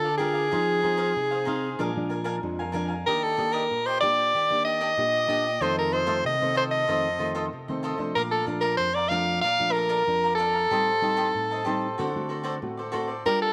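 A straight 4/4 samba groove runs through this short excerpt, which carries a yearning, nostalgic mood. A bright soprano saxophone takes the solo melody up front, playing in a jazz style with light vibrato and a punchy, forceful attack. Beneath it, a crisp cavaquinho is picked in the upper register while a classical nylon-string guitar is thumb-plucked with a warm tone, both sitting well behind the horn. The harmony moves from Gm7 through Fm7 and Bb7 to Ebmaj7, then F7 and Bbmaj7, before Am7b5 and D7 close the passage. All three parts play together from start to finish, and a moderate echo chamber reverb gives the 13.5 seconds a spacious sound.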